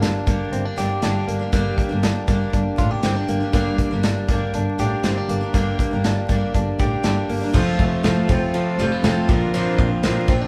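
A live-in-one-room recording with vinyl crackle and a moderate large studio reverb carries this breezy, nostalgic excerpt of jangly indie pop at 120 BPM, where a bright, shimmering octave-doubled twelve-string acoustic guitar and a clean, compressed electric guitar picking up-front arpeggios ride over a woody, distant bowed double bass and a punchy acoustic drum kit with a pumping room sound, moving from G minor to F at 7.5 seconds, when a reedy, overdriven vintage combo organ slips in behind, then to B-flat add nine at 9.3 seconds.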